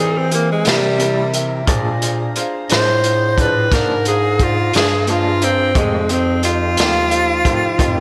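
Slow blues in a swaggering, rollicking 12/8, cut from a longer piece, where a clear, punchy tenor saxophone solos up front with vibrato and scooped notes over a breathy bass clarinet bass line, a gritty, saturated breakbeat kit entering at 0.3 s, a boxy grand piano with slapback echo, a flute-like tonewheel organ on slow rotary speaker, and a twangy, slightly broken-up electric guitar with tremolo and slapback coming in at 0.6 s, all set in a lush hall reverb with a big arena sound as the chords move from C7 to Bb7 to F7.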